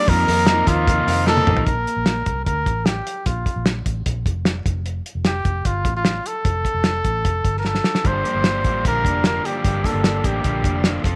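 Jangly indie pop at 150 BPM in straight 4/4, this breezy, bright passage is cut from a longer piece. An up-front trumpet with light vibrato carries the pop-style solo melody, tinged with slapback echo, over a cloth-damped, thuddy drum kit with a fat snare, tight kick and rolled-off top, playing hi-hat, kick, snare and toms with short fills. A dark, round, foam-muted fingered bass with tube saturation anchors the low end. In the background, a clean, twangy twelve-string electric guitar picks compressed arpeggios, also with slapback echo. A crunchy overdriven guitar and a worn, woody, slightly detuned upright piano open the passage, the piano dropping out at 1.7 seconds, and both guitars return together at 8.0 seconds as the harmony moves from F7sus4 through Fadd9 to Gm7, with studio reverb lending the mix a sense of space.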